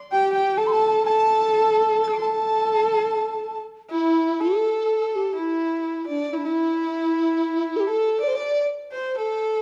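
A large bamboo dizi leads this graceful, tender fragment of Chinese traditional chamber music. Its hollow, mellow tone carries the buzz of its membrane, with vibrato and tongued notes sitting up front. Alongside it, a single erhu plays a second line, quieter in the mix, with a biting, nasal, boxy edge, an airy bow and gliding portamento. A horsehead fiddle, husky and focused, adds its own close, vibrato-touched second line over a narrow span before falling away at 3.6 seconds. The free, rubato flow moves in a gentle two-beat metre and shifts into a new section at 4.4 seconds. A moderate recital-hall reverb and a dark production wrap the ensemble until the cut at 9.6 seconds.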